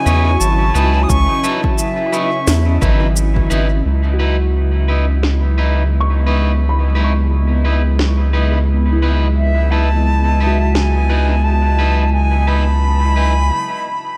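Ambient dub at 87 BPM in C# minor, spacious and hazy, opens on a C#m9 chord with a bright, reedy flute melody through tape echo, a smooth chorused analog pad, twangy guitar stabs on the edge of break-up fed into dub echo, a round, up-front analog bass, filtered electronic shaker and woody snare, and a punchy overdriven kick until 3.5 seconds, before a felt-muted upright piano with audible action noise enters at 4.1 seconds with filtered arpeggios under a filter sweep, leading to a brief break at 13.5 seconds in this fragment of a longer piece.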